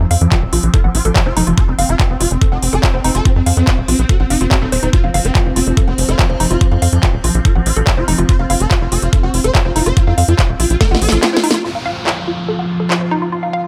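Psychedelic trance at 143 BPM in F major with an alien, hypnotic mood, this excerpt pairs a punchy, up-front sawtooth sequencer bass and a knocking, tape-warm electronic kick with a cracking snare, metallic hats and handclaps, while a swarming, detuned rave lead with portamento and sidechain pumping carries the melody over a morphing wavetable pad and a woody, wave-folded pluck riff with chorus and digital delay, before a drum fill at 10.8 seconds gives way to an electronic downlifter at 11.6 seconds in a dry, close sound.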